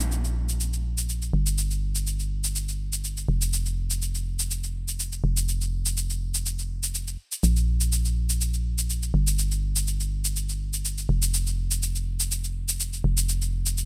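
An organ-like FM bass sits up front, hollow and dark, its fast-attack notes decaying in the low register from F1 to Bb1 and given grit by tube saturation. An overdriven electronic cabasa, also up front, plays alongside it across the full 13.9 seconds of this bittersweet, soulful piano house excerpt in a straight four-beat feel. The mix is dry and bright, with a 1980s-style digital sheen.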